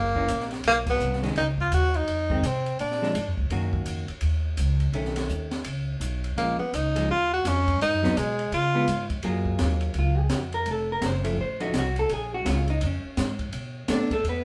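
Swinging and playful, this small-group swing and bop excerpt moves at 168 BPM in 4/4, with a breathy tenor saxophone using subtone, vibrato and scooped notes to state the melody in two short phrases, the second arriving at 6.4 seconds, over a woody, thumpy pizzicato upright bass with gut strings, a clean, picked hollow-body electric guitar comping in a dark voice, and an acoustic drum kit with shadowy cymbals, a high-tuned snare and a boomy kick, all caught live in one room with moderate studio reverb and a band accent at 0.8 seconds.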